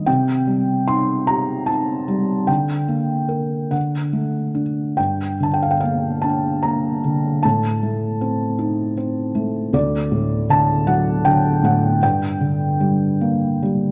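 In a rubato 6/8 at 47-53 BPM counted in dotted quarters, this melancholic, reflective fragment of lyrical classical solo piano in G minor places a felt-muted upright piano up front, mellow and intimate with thick felt and audible action noise, spanning D2 to C6 inside a moderate concert hall reverb and a dark production, while its harmony moves from Cm through Gm/D, D, Gm, Adim and D to settle on Gm at 12.0 seconds.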